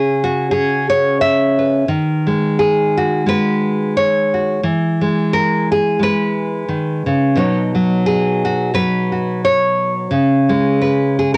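Cassette-tape coloring and a small, homely room frame this hopeful, nostalgic folk fragment, where a full-bodied nylon-string guitar sits up front, fingerpicked with a classical touch, audible finger squeak and a gentle swing as it moves from C#m7 through G#m7/D#, E and Badd9 before settling on C#5 at 10.1 seconds.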